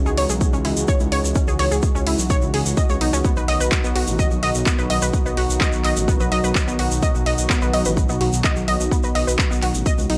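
A dry, gritty hardware sound frames this melancholic, cinematic melodic techno cut at 127 BPM, where a punchy layered electronic kick and house handclaps and hi-hats, with sidechain pumping on the hats and studio reverb, drive a deep, rumbling detuned saw bass, a grainy vintage tube shaker, a smooth, slow-attack analog pad with chorus holding sustained chords, and a round, bright analog pluck up front spinning arpeggios through chorus and analog delay over a move from C#madd9 to B at 3.2 seconds.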